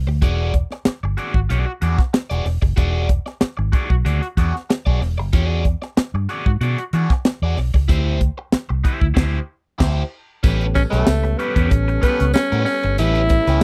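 A playful, gritty funk excerpt at 94 BPM in a straight 4/4 opens with a round, foam-muted, fingered electric bass sitting up front, joined almost at once by a crunchy, bright overdriven guitar with phaser and a tight, polished drum kit whose high-tuned snare, tight kick, hi-hat and crash also sit close to the listener. The chords move from E9 to D9sus4 before the band hits a shared accent at 9.2 seconds that drops into a brief silence at 9.8 seconds. At 10.4 seconds the harmony lands on A9 as a mellow, dark tonewheel organ with percussive third-harmonic attack, chorus vibrato and a slow rotary speaker slips into the background alongside a jingly, very quiet tambourine. Moments later a raspy tenor saxophone takes the solo melody up front, its clear, smooth-topped tone carrying light vibrato, scooped notes and a slapback echo. The recording has a dry, close, 1970s-style studio sound with little reverb.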